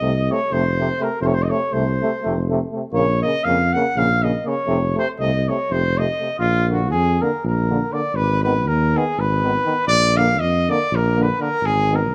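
A mellow, roomy trumpet with light vibrato carries the fiery, virtuosic melody of this Balkan brass band piece in a straight 7/8, sounding slightly distant yet up front and taking a solo through the first 6.4 seconds. An up-front tuba with its own light vibrato anchors the bass, while a clear euphonium and a present trombone play classical-style accompaniment in the background. The harmony moves to a new centre at 6.4 seconds, and the whole is captured with close, detailed microphones and light reverb in a short cut from a longer piece.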